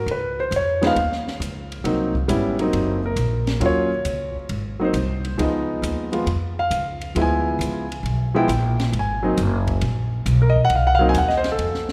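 A jazz piano trio swings through this playful passage, cut from a longer piece, with a lilting 4/4 feel that never settles into stiffness. The concert grand carries the melody as a solo across the full 11.9 seconds, its intimate, natural tone up front, with a deep low end and a faint clatter of key action audible beneath the notes. Pizzicato upright bass holds the bottom, woody and thumpy with the bite of steel strings, sitting close to the listener alongside the piano. A compact cocktail kit joins at 0.1 seconds, further back in the mix, its dark, smooth sound built from hi-hat, ride cymbal, a punchy kick and a high-tuned snare with a rolled-off top. The harmony moves through rich colours, from Db9 and Ab9 into Ebm7, then through Ddim7 and Ab7sus2 before closing on Cdim, all bathed in a moderate church reverb that gives the trio a spacious, resonant hall around it.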